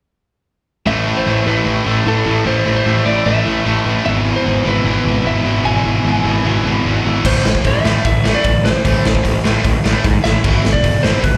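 A straight 4/4 pulse at 150 BPM drives this urgent, angry punk rock excerpt in A harmonic minor, heard as a live gig through a venue's PA with small-room club reverb. From 0.9 seconds, an up-front crunchy overdriven guitar and a tight distorted guitar play low riffs over A5 and E/G# chords, while a growly, fuzz-laden picked bass sits up front beneath them. Above, a bright, slightly broken-up and compressed lead guitar carries the melody, and all three guitars share a slapback echo. At 7.2 seconds the crunchy guitar stops as a raw garage drum kit enters with a punchy kick, medium-tuned snare, hi-hat and crash, its gritty, saturated sound pumping in a stone room with a rolled-off top. The harmony then moves to Am and returns to E/G# before the excerpt cuts off.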